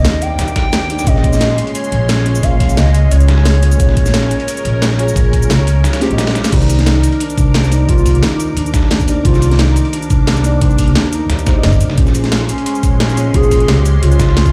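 A hollow, clarinet-like synth lead carries a melancholic, soulful melody over a mellow FM electric piano, a lush detuned pad and an up-front pizzicato upright bass with a woody tone, with a cracking snare and metallic hats at once setting a straight 176 BPM liquid drum and bass groove in C phrygian. A knocking electronic kick joins at 0.6 seconds, while a gritty, overdriven sampler-style kit sits in the background and a drum fill at 6.2 seconds leads back into the drop as the chords move between Cm9 and Bbm9. The piano carries chorus, phaser and delay, the lead a digital delay and vibrato, and the whole cut-off passage rings through a big, bare room with a large studio reverb.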